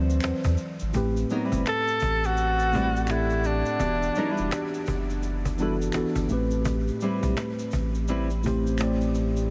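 Smooth and soulful, this short neo-soul and R&B cut sways with a lazy, swung sixteenth-note lilt in 4/4. A worn, slightly out-of-tune tine electric piano carries the chords through a gentle analog chorus, moving from D9 to Am9, then Em7 and back to Am9. Beneath it, a deep, round analog bass sits up front, while a snappy, close cajon played with soft hands and a quiet layer of tube shaker and finger snaps keep the groove light. A fingerpicked nylon-string guitar adds a classical-style second line from 1.3 seconds, and a breathy tenor saxophone takes a brief, intimate solo between 1.7 and 4.9 seconds, with whispered tone, vibrato and scooped notes trailing into a diffuse ambient delay. The whole mix is dreamy and soaked in a huge ambient reverb.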